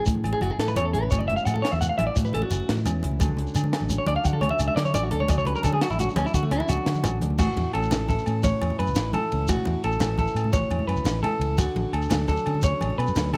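Highlife guitar band music in a warm, joyful mood, moving at 115 BPM in a straight 12/8 in A major, cut from a longer piece. A clean, picked electric guitar sits up front with slapback echo, spinning arpeggios and taking a solo through the first 7.4 seconds over chords that shift between A6 and Dmaj7. Beneath it, a dark, fingerpicked flamenco guitar supplies quieter accompaniment, while a round, amped fingered electric bass anchors the low end. A compact cocktail drum kit with a high-tuned snare, punchy kick and rolled-off top drives the groove with crash, ride and hi-hat, joined by soft-handed, ringing congas in the background and a grainy, close shekere. Vintage-toned agogo bells add a faint, band-limited shimmer far back in the mix, and light reverb gives the whole band a gentle sense of space.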